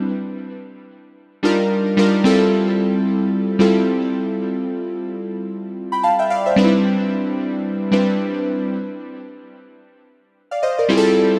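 Glassy, airy digital keys play alone and up front in this short soulful amapiano fragment at 111 BPM, their bright sine tone layered with a breath of noise, a filter sweep, and chorus and delay on quick-attack, decaying notes. Set in F lydian with a lilting 16th-note swing, the harmony drifts from Ebmaj9 through Fmaj9 to Cmaj9 before the chords fall away at 8.7 seconds. A lush hall reverb gives the whole piece a spacious, enveloping glow.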